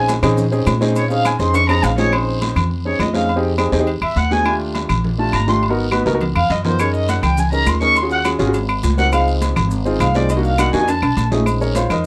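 Afro-Cuban jazz at a driving 206 BPM in Bb minor, cut from a longer piece, where a dark, distant bowed erhu solos with vibrato and portamento over an intimate, up-front concert grand piano with audible action noise and a woody pizzicato upright bass, while ringing metal-shell agogo bells and timbales, high-tuned vintage congas, dry claves, a raspy guiro and grainy maracas drive a sophisticated groove marked by drum fills near 1.5, 5.9 and 10.9 seconds.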